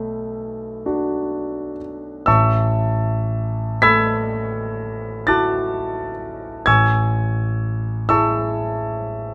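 A short, intimate excerpt of solo concert grand piano, set up front in light reverb, with a smooth vintage tone, deep bass and audible action noise. This hazy, dreamy impressionist classical fragment drifts in a slow, rubato 9/8, moving from Bm7 to A6 at 2.3 seconds and settling on C#m/A at 6.7 seconds. The piano spans from A1 up to B6 across its 9.3 seconds.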